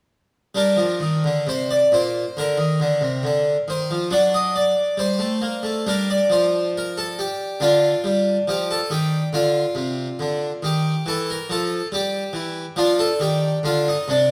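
Set in a reverberant recital hall yet heard up close, a brilliant, plucked French-style harpsichord with three sets of strings plays a solemn, grave baroque-style suite movement in G minor alone from 0.5 to 14.3 seconds, moving at a rubato 69 BPM in 4/4 through chords from Gm and D7/F# to Dm and Emadd11 in this fragment cut from a longer piece.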